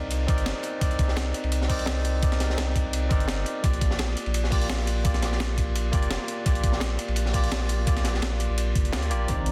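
Lightly reverberant and densely limited, this dreamy, soulful liquid drum and bass excerpt at 170 BPM moves from Cm9 to Bb6 as a barky tine electric piano with delay and a saturated, up-front sub bass play throughout, driven by a thumpy electronic kick, a sampler-style breakbeat kit with a high-tuned snare, and a crunchy, dark-cymballed breakbeat kit with a rolled-off top and high-pass filtering on its hats, cymbals, snare and room, before a lush, chorused unison pad with sidechain pumping and an electronic impact arrive at 9.3 seconds.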